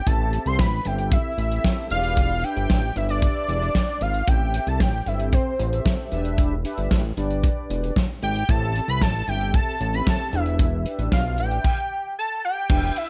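Early-eighties boogie funk with a danceable, slick mood, cut from a longer piece, moving in a straight four-four feel over a loop that alternates Am7 and Em7. An up-front modern studio drum kit drives it, with a punchy kick, a fat snare washed in gated reverb, and hi-hat and crash cymbal in a mid-forward studio-room sound. Underneath sits a thick, detuned sawtooth analog bass, sustained and placed close in the mix. A mellow synth brass part adds a round, dark accompaniment with a brassy edge, coloured by ring modulation, a filter sweep, chorus and vibrato. Over the top, a detuned sawtooth lead carries the melody with an evolving tone, a sub-octave weight and chorus, while the whole band drops into a stop from 11.6 to 12.7 seconds before the clip closes.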